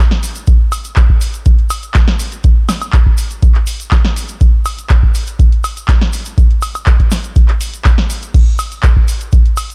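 House at 122 BPM in a straight 4/4, this trippy, gritty cut from a longer piece rests on a deep, tape-warm electronic kick drum that sits up front with small-room ambience from 0.5 s. A dry, punchy analog drum machine supplies crash cymbal, handclaps, hi-hat, a punchy snare and woodblock, while a grainy, mellow tube shaker stays in the background. The production is dark and warm, with little reverb.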